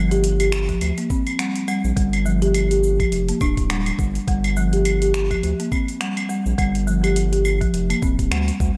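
A gently swung sixteenth-note groove of claves, finger snaps, metallic hi-hat and shaker from an afro-pop kit drives this hypnotic organic downtempo fragment, where a woody, mellow marimba with soft mallets plays up-front arpeggios through tape and slapback echo over a round, deep analog bass with tube saturation and sidechain pumping, while a knocking electronic kick joins at 0.7 seconds, all set in a lush hall reverb with a big arena sound.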